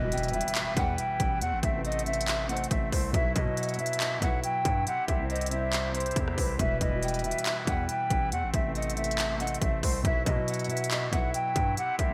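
Menacing and hard-hitting, this half-time trap excerpt opens on a very quiet electronic impact as a trap kit with a hard-clipped kick, crisp hats, handclaps and rim clicks sits up front in gated reverb beneath a saturated, heavy distorted 808 bass, while an airy metal jazz flute carries the melody with vibrato and digital delay over a dark, boxy grand piano, a soft-reed pipe organ holds chiffy oboe-stop chords with tremulant, and a distant, mellow wooden pan flute traces a second line in the background, all set in a bright 1980s-style digital production.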